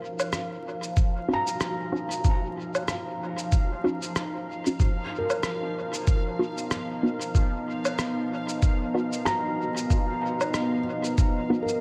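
A deep, dark ambient pad fades in alongside mellow felt-muted upright piano arpeggios with audible action noise and dub echo and a bubbling, resonant stepped-filter texture, opening this spacious, meditative ambient dub excerpt at 94 BPM with swung 16ths over Ebm7 moving to B at 4.8 s; muffled, pitched-down electronic cabasa, woodblock and rim clicks enter at 0.2 s, a thumpy, compressed, up-front electronic kick drum arrives at 1.0 s, and a muted, wave-folded dub chord stab with phaser, dub echo and a filter sweep sits in the background, with vinyl crackle in the mix.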